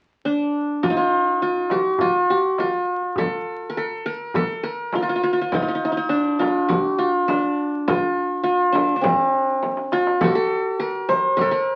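A bright, plectrum-plucked qanun opens at 0.3 s, its triple strings ringing up front as it carries a passionate, festive melody in this Arabic maqam ensemble piece at 102 BPM in a straight 4/4, tuned to A4 = 438 Hz. From 0.8 s a clay-shelled darbuka played with soft hands sits close, dry and in the background, while a large frame drum struck with hard hands adds deep, roomy weight, and a drum fill arrives around 9.6 seconds. The whole passage, cut from a longer piece, carries the crackle of a very old 78 rpm record and a wet studio reverb.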